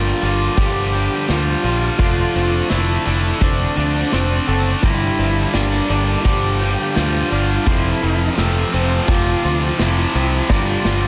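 Cathartic and cinematic, this 85 BPM post-rock passage in G dorian is a build-up with a drum fill running its whole length, cycling through Gm7, Dm7/F and Fmaj7 in a straight 4/4. The punchy, growling overdriven bass and a bright, overdriven distorted guitar riff sit up front, with slapback echo thickening the guitar. A dark, bowed cello carries the melody with expressive vibrato and portamento, its smooth top colored by slapback and tape echo. Behind it, a compressed, twangy twelve-string electric guitar picks clean arpeggios through analog chorus and tape echo, while a very quiet pedal steel holds sustained chords with slide and volume swells. A glockenspiel struck with soft plastic mallets adds airy, bell-like arpeggios through tape echo from 0.2 seconds, and a big acoustic rock kit with bright cymbals and a medium-tuned snare crashes in at 0.6 seconds. A lush hall reverb gives the whole passage a big arena sound.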